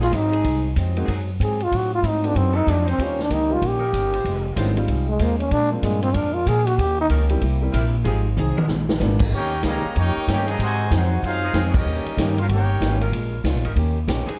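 A raspy, growling trombone carries the melody up front with scooped notes and plate reverb until 7.1 s, opening this brassy, swinging big band excerpt at 189 BPM in Eb mixolydian. Beneath it, a woody pizzicato upright bass, a punchy big-room drum kit, a boxy picked guitar in the background, a vintage saxophone section holding sustained chords with vibrato and a warm upright piano keep the swing going, and a drum fill leads into the move to Eb major. From 9.3 s a clear trombone section plays a second line, and at 9.4 s a tight trumpet section with light vibrato takes the melody over it, and the band hits an accent at 11.7 s.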